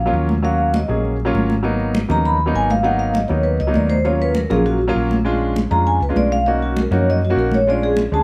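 A straight 4/4 pulse at 199 BPM drives this fiery, sophisticated Afro-Cuban jazz in Eb minor, where a mellow, ringing vibraphone with soft mallets and medium motor vibrato solos over chords moving from Ebm7 and Abm7 through Bb7#9 to Bmaj7, backed by a round, punchy hollow-body short-scale electric bass up front, an intimate grand piano with audible action noise and long sustain, and bright, high-tuned congas set distant in a large room, heard through moderate studio reverb.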